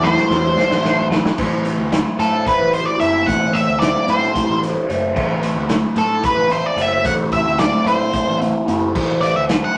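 Drenched in wet studio reverb, this trippy, mysterious psychedelic rock cut moves at 222 BPM in 7/8 in A dorian, opening with a drum fill from a gritty garage kit with a punchy kick and rolled-off top while a very quiet tonewheel organ with slow rotary sway holds chords until 1.3 seconds; at 1.4 seconds the dark, up-front octave-fuzz lead guitar launches a distorted solo over a lo-fi, slightly broken-up riff guitar through a phaser and an overdriven fuzz bass.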